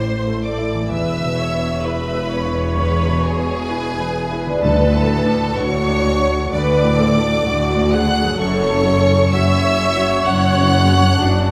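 A warm, vibrato violin section carries the tender, moving melody high above a second, rich and close violin line in this slow, rubato cinematic passage in D Lydian at 64 BPM. A dark, mellow concert grand piano and a lush viola section fill out the accompaniment, while a very quiet, ringing harp plays arpeggios and expressive cellos join a smooth, distant double bass section in the background. Very quiet timpani sound only from 4.6 to 6.0 s, and the whole passage is bathed in a wet scoring-stage reverb as the harmony moves from Am through E and D to F#m.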